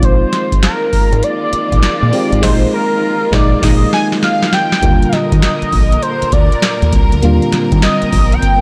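A bold, bright octave-doubled sawtooth lead with chorus and phaser carries the melody up front in this flirty, upbeat new jack swing excerpt, over a booming analog drum machine with gated reverb on its deep kick, crisp snare, handclaps and metallic hats, a round, punchy dub bass, a glassy, bell-like FM electric piano and a lush, distant string section, with a band accent from 2.4 seconds, a drum fill from 3.6 seconds and a shift to the second section at 4.8 seconds.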